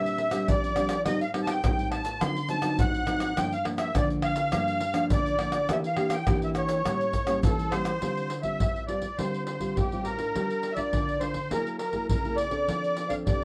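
Bittersweet yet lively, this short excerpt from a longer samba and choro piece moves at 103 BPM in a straight 4/4, set in D minor with tuning a touch below standard pitch. A reedy musette accordion carries the melody from G4 up to C6, its shimmering, airy tone placed up front. Beneath it, a thumb-plucked classical nylon-string guitar supplies warm accompaniment, spanning G2 to Bb4. Egg shaker, pandeiro, tamborim and a deep surdo enter at 0.1 seconds, played with soft hands in an acoustic small-room sound, also close and present. The harmony is rich with extended and altered chords such as Bb69, Am7b5, D7b9 and F#9, shifting from one section into a second one at 8.0 seconds. Moderate studio reverb surrounds the ensemble, and the whole recording carries the worn character of old cassette tape, with warbly pitch drift.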